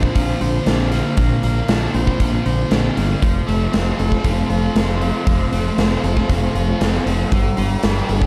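A dark, warm production in a small room ambience gives this brief shoegaze and dream pop cut from a longer rock piece a hazy, wistful air. At 117 BPM in a straight 4/4, a big acoustic rock kit drives it with a punchy kick, a medium-tuned snare and hi-hat, all set in a bright stone room. Two picked electric guitars play riffs throughout: a biting overdriven one carrying a reverse reverb, and a dark, compressed fuzz guitar with distortion and ensemble chorus sitting in the background. Up front, a growling fingered electric bass, direct and amped with overdrive, anchors the low end. At 3.4 seconds an evolving wavetable pad enters in the background with detuned, morphing sustained chords, a slow attack and long release, treated with chorus and its own reverb. The harmony moves from Bbadd9 to F at 3.2 seconds and to Gadd9 at 7.3 seconds.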